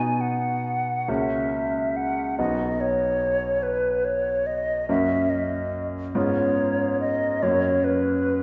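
Tender and lyrical, this 8.4-second fragment of a longer romantic classical duo unfolds in a rubato 6/8 at 47 BPM in B major, tuned to A4 = 439 Hz. A pure, hollow concert flute carries the melody with vibrato and tongued notes between B4 and G#5, over a brilliant, natural grand piano accompaniment spanning B1 to F#4, both placed up front. The harmony moves from B through F#7/C# and C#7/G# to settle on F#, with the duo bathed in a wet concert-hall reverb of 2.0 seconds, heard from further back in the room with a softened top end.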